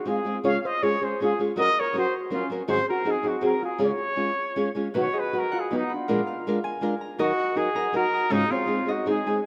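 In a rubato 3/4 at 160 BPM, this dramatic, passionate mariachi passage in Db major, cut from a longer piece, is led by a warm, classical-style solo trumpet with light vibrato, sitting up front yet roomy. A dark, fingerpicked nylon-string guitar carries the accompaniment, while a mellow steel pan, played with soft rubber sticks, adds a shimmering second line. At 4.9 seconds a bright concert harp joins with ringing fingerpicked arpeggios, all set in a lush hall reverb with a rough home-demo mix.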